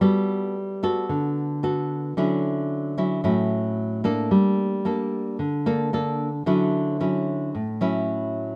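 Close, detailed microphones and light reverb frame this sunny, romantic bossa nova excerpt at 112 BPM in D major, where a dark, up-front classical nylon-string guitar plays alone, fingerpicked with audible finger squeak between A2 and A4 over Gmaj9, Dmaj9, Gmadd9 and Dmaj9 across 8.6 seconds.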